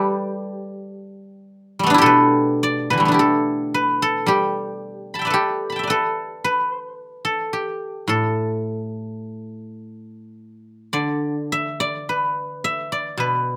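Serene and pastoral, this short passage cut from a longer piece of Chinese traditional music features a solo guzheng played with fingerpicks, its bright, silvery, ringing tone sitting up front and spanning a broad range from low to high registers. The playing unfolds with a free, rubato feel in a gong mode, and a slapback echo trails the plucked notes. The dry outdoor recording carries little reverb, with a brief opening phrase giving way at 2.0 seconds to a longer second section that runs to 13.6 seconds.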